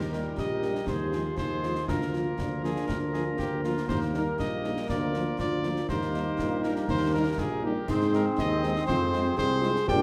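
Heard in a wet recital hall, this spirited, proud military-style march for wind band moves at 120 BPM in a straight 2/4 in Eb major, cut from a longer piece. A clear cornet with a smooth top carries the melody from 0.1 seconds, while a lightly vibrato euphonium sits in the background and a soft-edged, roomy woodwind section adds second lines, with a very quiet, close-miked French horn section providing accompaniment. Distant trombones hold sustained chords above a mellow tuba bass, and concert snare drum, concert bass drum and clash cymbals with dark cymbal tone round out the classical-style playing.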